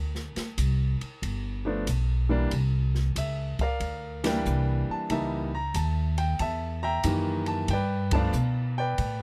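Woody pizzicato upright bass opens this swinging, sophisticated jazz piano trio excerpt, joined almost at once by an airy drum kit with dark cymbals and a boomy kick, before a clear, present baby grand piano takes the melody at 1.7 seconds over chords moving from Csus2 through C#dim7 to G9, with the full band striking accents at 4.1 and 8.0 seconds in a dry, closely miked and detailed recording.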